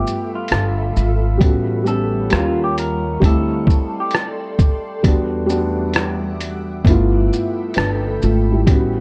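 Lo-fi hip hop at 66 BPM in 4/4 with a swung sixteenth-note feel, melancholic and hazy in mood, cut from a longer piece. A felt-muted upright piano carries the accompaniment throughout, soft and intimate with audible action noise and a cassette-tape tint, while a granular cloud pad holds blurred, evolving chords underneath through its own built-in reverb and a low-pass filter. An electric guitar through a small old amp plays a brief, slightly broken-up melody between F4 and A#4, heard only until 4.1 seconds and colored by a low-pass filter and analog delay. The sampler-style drum kit enters at 0.1 seconds with hi-hat, a thumpy kick, rim click and shaker, sounding pitched down, muffled and gritty from vintage 12-bit character, and sits up front in the mix. A woody, growly pizzicato upright bass joins at 0.5 seconds, while the harmony drifts through extended chords such as G13, A13 and Em9 before returning to G13 at 6.9 seconds, all bathed in light reverb.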